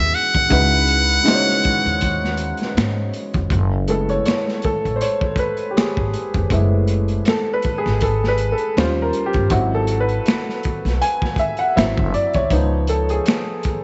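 A buzzy, metal-muted trumpet with vibrato and scooped notes opens this sultry, introspective neo-soul R&B fragment over a clear, worn baby grand piano and woody, growly pizzicato upright bass, then drops out at 2.8 seconds as the piano takes a solo from 3.5 seconds, backed by a gritty, saturated breakbeat kit of finger snaps, hi-hat, tight kick and snare in light studio reverb.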